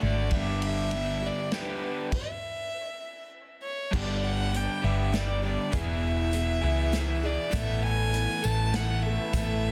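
Folk rock and heartland rock at 100 BPM in a straight 3/4, this open-road, warm excerpt is led by a dark, woody fiddle played up front with light vibrato, portamento and analog delay, over a shimmering, octave-doubled twelve-string acoustic guitar, a crunchy, double-tracked overdriven guitar riff and a round, hollow-body electric bass sitting up front. A distant, roomy acoustic drum kit played with bundle sticks adds a medium-tuned snare, a punchy kick, hi-hat, ride and crash, and the band stops from 2.1 to 3.9 seconds before moving through G, E and Asus2. At 7.5 seconds a very quiet, lightly overdriven tonewheel organ with key click and slow rotary enters together with a jingly tambourine in the background, all set in light reverb within a dense, heavily limited modern master.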